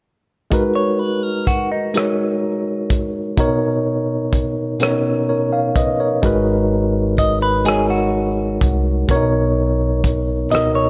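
A worn, slightly out-of-tune tine electric piano sits up front, lightly overdriven and heard through its built-in speakers, carrying the accompaniment in this yearning, sultry slow six-eight R&B piece in G# minor at 42 BPM. The harmony alternates between G#m9 and Bmaj9. A soul drum kit keeps the pulse with hi-hat, rim click and a tight kick, its rolled-off top set in a tight booth with a pumping room sound. A clean, fingered semi-hollow electric guitar plays a second line up front, its hollow-body tone colored by a warbly pitch drift. At 6.2 seconds a pizzicato upright bass enters, woody and thumpy with steel strings. Light reverb and studio ambience surround this short cut from a longer piece.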